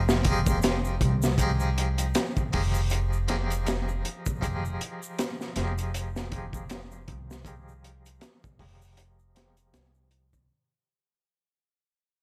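Cinematic and smoky, this short trip hop excerpt moves at 79 BPM in 4/4 with a 57% swing on the sixteenths, resting in F minor on a single Fm9 chord. A crunchy breakbeat kit sits up front with a gritty, saturated sound, its high-tuned snare, tight kick and hi-hat carrying a rolled-off top end. The upright bass, also up front, is plucked pizzicato on steel strings for a woody, growly low line between F1 and C2. A nasal, thin harpsichord in the French style plays accompaniment between F3 and Ab4, coloured by tremolo, tape echo and a low-pass filter, with a filter sweep running across the whole passage. An egg shaker stays close yet in the background, and a small room ambience surrounds the parts as the clip fades out over its full 10.5 seconds.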